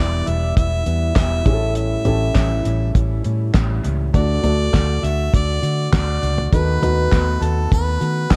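A straight 4/4 groove from a damped, dry 70s drum kit with fat snare, tight kick, handclaps, hi-hat and toms enters at 0.3 s, sitting up front beside a round, punchy, foam-muted electric bass in this hopeful, piano-driven pop excerpt. A mellow baby grand piano carries the chords from Em through A7 and D to B7/D#, while a fingerpicked, full-bodied jumbo steel-string acoustic guitar with fresh strings plays a riff through analog delay. A clear, present harmonica takes the solo melody, also treated with analog delay, and studio reverb gives the whole an echo-heavy glow.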